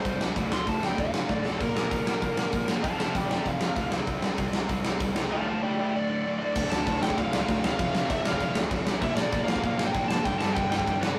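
An up-front acoustic rock drum kit drives this aggressive, angry punk rock passage at 194 BPM in 4/4 and D minor, its tight kick, medium-tuned snare, hi-hat, crash and splash ringing in a big room, with a short fill at 1.3 seconds. Over it, a lead guitar through a small cranked amp plays a dark, overdriven solo in a high register until 6.6 seconds, after which the section changes. Beneath the lead, several picked guitar riffs sit very quiet in the mix: a bright, crunchy overdriven part, a sludgy overdriven one, and a double-tracked, compressed distorted guitar that joins at 1.6 seconds. A single bowed cello carries the bass line in the background, its rich tone marked by vibrato, portamento and a soft, expressive attack. The chords move through Dm, Bb5, F5 and C5, then later F5, Bb and G5. The rough rehearsal-room sound carries light reverb and saturation, and the clip is cut from a longer piece.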